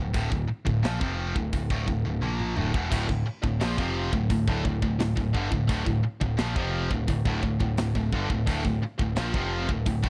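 A high-gain, up-front distorted guitar drives a dark, relentless heavy metal riff in D minor at 86 BPM alongside a growling overdriven bass, with a tight drum kit with bright cymbals whose fill at 2.2 seconds brings in a second double-tracked distorted guitar riff at 2.9 seconds, all captured as a dry, close 1970s-style studio recording in a small room, cut from a longer piece.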